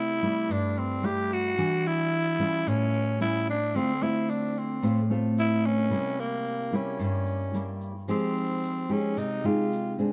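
A growling tenor saxophone carries the melody up front in this smooth, melancholic bossa nova, its breathy, raspy tone shaped by soft attacks and scooped notes in a jazz style. Beside it, a nylon-string guitar plays classical-style, thumb-plucked accompaniment, sitting equally forward with the fresh sound of new strings. A grainy tube shaker joins at 0.2 s, sitting low in the mix with a bright, small-room character. The harmony moves from C6 through Em9, A7b13 and Dm7 to C7, then turns to Fm9 as a new section opens at 8.1 s. A moderate plate reverb adds space to this brief excerpt of a longer piece.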